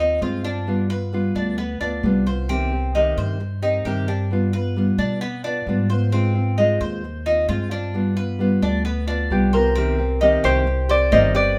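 A ringing, thumb-plucked Celtic harp carries the melody, arriving at 9.3 seconds and sitting a little louder than the rest as this sultry Latin passage in C harmonic minor moves at 132 BPM in a straight 4/4. Beneath it, a Cuban tres picks metallic arpeggios on its doubled strings while a dark, full-bodied nylon-string guitar fingerpicks the accompaniment, with an audible finger squeak, over Ab6, G7 and Cm7. A woody, thumpy pizzicato upright bass on gut strings anchors the low end, and light reverb frames this short section cut from a longer piece.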